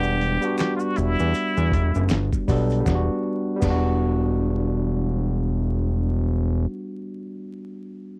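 R&B and neo-soul in E minor at 79 BPM, this short, introspective and sultry fragment rests on an Em9 chord with a swung sixteenth feel, opening on a brilliant, plunger-muted trumpet melody with wah-wah, vibrato and slapback echo that falls silent by 2.1 seconds. A barky, lightly overdriven tine electric piano carries the accompaniment through 8.2 seconds over a fat, detuned analog bass with a filter pluck, while a gritty, compressed sampler-style drum kit with thumpy kick, handclaps and crash enters at 0.2 seconds alongside background maracas and finger snaps. The dry, close 1970s-style studio sound is dusted with vinyl crackle.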